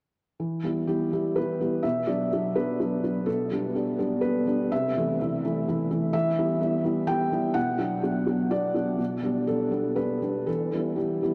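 A felt-muted upright piano plays alone from 0.4 to 11.3 s, its soft, intimate tone carrying audible action noise and a vintage tape echo as it drifts through a wistful, reflective passage of neoclassical minimalism in a rubato 3/4. The harmony circles through Em, Bm, Gadd9/B and Am/C before coming to rest on Em. The piano sits up front in a dreamy mix soaked in a huge ambient reverb, and the passage is cut from a longer piece.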